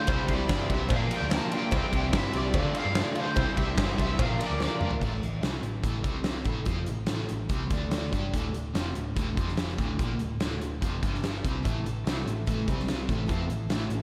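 Lightly reverberant studio ambience frames this gritty, brooding classic rock cut from a longer piece in D minor at 145 BPM, where a dark, big-room drum kit with a fat snare and punchy kick sits up front beside a round hollow-body short-scale bass. Double-tracked biting overdriven guitar riffs, one carrying harmonic tremolo and slapback echo, drive the groove, while a wah-soaked lead from a small cranked amp, a barely audible lush string machine, a very quiet boxy archtop acoustic with finger squeak and a close metallic cowbell fill out the opening until a drum fill at 4.6 seconds. The sparser second section runs on riff, bass and drums, with the archtop returning at 11.6 seconds.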